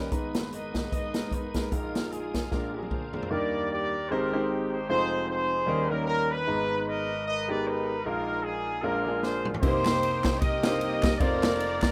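A horn section with light vibrato carries the melody up front in this soulful, reverent stretch of uptempo gospel at 152 BPM, swung in 4/4 over chords such as Abmadd9, Bb7sus4 and Ebmaj7. A clear concert grand with deep bass accompanies throughout, joined at first by a piping tonewheel organ through a slow rotary speaker in the background, a very quiet sul tasto string section and a punchy big-band kit, all three of which drop out at 3.3 seconds. The kit returns with a fill at 9.2 seconds, the organ comes back soon after, and crisp group handclaps arrive at 9.8 seconds, with light reverb giving the whole a rough home-demo feel.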